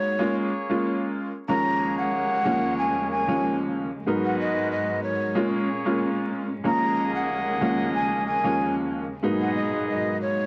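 This short cut from a longer hip hop piece has the grain of a home cassette recording, with vinyl crackle and a light reverb around it. The mood is reflective and gritty, set on a gently swung groove in four. Up front, a breathy metal jazz flute carries the melody with vibrato, lifted highs and expressive phrasing, beside a worn, woody upright piano that sounds slightly detuned; both parts have a cassette-tape colour. From 0.2 seconds a mellow trumpet section adds soft-attack stabs in a classical style, with a smooth top and an analog delay trailing behind. From 1.5 seconds a lush, bowed studio string section sits in the background with sustained chords, as the harmony moves through A#m7, D#7sus4 and G#m7.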